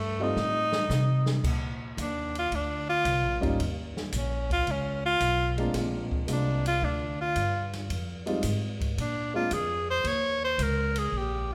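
A moderate recital-hall reverb gives this short cut from a longer piece the airy ring of a church or concert hall. It is small-group jazz in the swing and bop vein, swinging and playful at 112 BPM in 4/4, with a strong swing on the eighth notes in Bb mixolydian. A bright tenor saxophone with a light vibrato solos up front from the start to the end at 11.5 seconds, while a woody pizzicato upright bass on steel strings sits close beside it. A dark, mellow concert grand piano accompanies in the middle register until 9.5 seconds, its notes short in sustain. The open jazz drum kit, with dusky cymbals, a medium-tuned snare and a boomy kick, opens with a fill at 0.4 seconds and uses crash, hi-hat, kick, ride and snare. The harmony moves from a rootless F9 through Bb, Ebsus2, Bb9 and Fm7, then back to Bb9 before arriving on Eb7.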